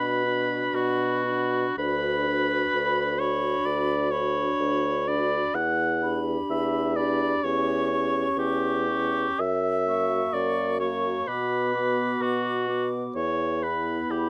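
In a rubato 4/4, this solemn, elegiac fragment of a slow romantic wind-quintet movement sets an airy, crisp-edged silver flute melody with vibrato high above an up-front oboe second line with a smooth top, while clarinet and French horn supply warm, distant accompaniment from a roomy background and a mellow, close-miked bassoon carries the bass, captured in a dry, intimately detailed sound.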